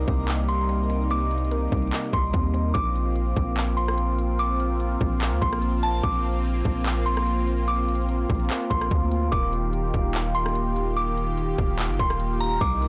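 A half-time trap groove of hard-clipped kick, crisp hi-hats, handclaps and rim clicks carries this spacious, hazy cloud-rap excerpt, where a deep, mellow 808-style bass sits up front beneath a smooth, detuned sawtooth pad with sidechain pumping, a crystalline FM bell melody glints above with chorus and delay, and a woody, warbling mallet-like pluck plays arpeggios in the background only until 2.7 seconds, all within a blown-out, overdriven, dry mix moving from Cm7 through Bbsus2 to Ebadd9.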